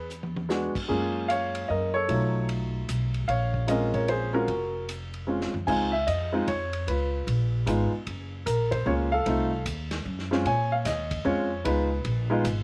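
Cool and smoky, this swinging jazz-waltz trio excerpt sets an up-front baby grand piano with short sustain carrying the melody over a woody, growly pizzicato upright bass, while a muffled, lo-fi vintage kit with a tight kick and rolled-off top sits further back, playing fills at 0.1 and 5.3 seconds, all in light reverb and studio ambience.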